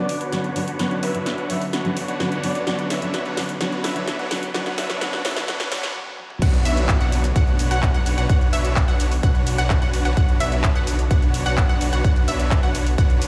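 Festival progressive house in B minor at 128 BPM, this euphoric, anthemic excerpt opens on a Bmadd9 build-up where a soft, breathy flute-like synth lead sings briefly in the background over dark, fingerpicked steel-string acoustic guitar with 12-bit sampler grit, huge detuned supersaw chords under a filter sweep, a very quiet warbling unison pad, a thick detuned saw bass, faint risers and a drum fill from the big-room kit's punchy snare, toms, claps and cymbals, then after a brief break the drop hits at 6.4 s with a punchy, up-front electronic kick and bright, pumping unison pluck arpeggios, all set in a large studio reverb as if played on a big sound system in a bare room.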